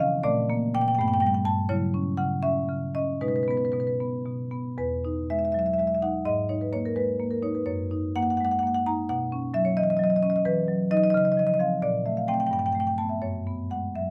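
A solo marimba played with medium mallets sits up front, its dark, smooth tone ranging from E2 to A#5 in a playful, warm contemporary classical piece in B major. In a flexible, rubato 6/8 at around 75-90 BPM counted in dotted quarters, rich extended harmonies such as A#maj9, C#madd11, Emaj9 and F#69 drift past, closing on an F#9sus4 at 13.2 seconds. Light reverb gives the marimba a gentle sense of space in this short passage cut from a longer work.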